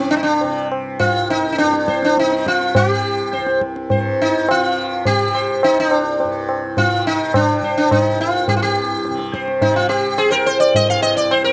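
A bright, up-front sitar carries the melody, its plucked tone buzzing and shimmering with sympathetic strings over a softly plucked, warm tanpura drone in this introspective, longing Hindustani fragment in raga darbari. Low-tuned, ringing tabla joins at 0.4 seconds, close and dry, marking a five-beat cycle as the pace gradually quickens. Recorded outdoors with little reverb, the sound is intimate and plain, with the sitar standing well ahead of the quieter drone and drums.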